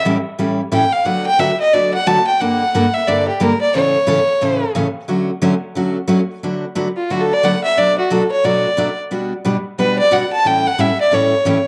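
Wet spring reverb and a small room give this cheerful, down-home country fragment a close, lively sound, cut from a longer piece. At 179 BPM in 4/4 with a swung eighth-note feel in D major, a picked steel-string acoustic guitar sits up front from the start, bright and full-bodied with a dreadnought's body and audible finger squeak as it carries the accompaniment. A single fiddle takes the melody from 0.7 seconds, rich and biting, with light vibrato, an airy bow and an earthy character heard close and forward in the mix. The fiddle pauses briefly before returning at 7.0 seconds for a second pass through the same section. Underneath, the harmony moves through colorful chords such as A7, D6, Gmadd9 and Dmaj7, with Bm7 and Gmaj7/B in the second half.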